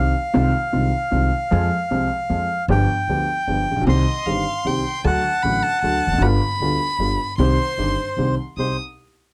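A reedy, bright bandoneon leads this sultry, melancholic tango fragment in a rubato 3/4, sitting up front over a clear, slightly detuned upright piano with short sustain and a woody, growly pizzicato upright bass. At 3.9 s a single bowed violin joins with a warm, expressive second line, its soft attack, vibrato and portamento deepening the melancholy. Light reverb and a cassette tape sound frame the performance.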